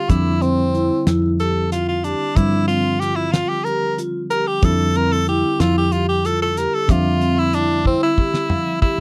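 Progressive instrumental band music in a driving, intricate 7/8, this excerpt features an edgy, forceful tenor saxophone soloing up front with vibrato and scooped notes over a clean tine electric piano in the background, ringing vibraphone arpeggios, a round, foam-muted fingered bass that stops at 8.0 seconds, and a damped 70s drum kit with a fat snare and tight kick that plays a fill from 7.9 seconds, all in a dry, close 1970s-style studio sound.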